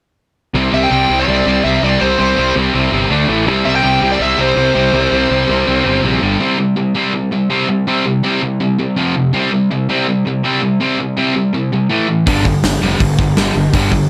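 A smooth, overdriven lead guitar carries the melody from 0.7 s in this rebellious, rowdy punk rock excerpt, sitting up front in a bright upper register at a driving 164 BPM in a straight 4/4. Beneath it, two picked rhythm guitars hammer out the riff throughout: one brightly distorted and compressed, the other sludgy and overdriven, both placed close and forward. A growly, fuzz-laden electric bass, picked and overdriven, anchors the low end in C major, dropping out at 6.4 s, when the lead has already finished and the guitars push on by themselves. At 12.3 s the bass returns alongside a big acoustic drum kit, its punchy kick, medium-tuned snare and hi-hat heard in a large room with a rolled-off top. Little reverb keeps the whole mix dry, loud and in your face.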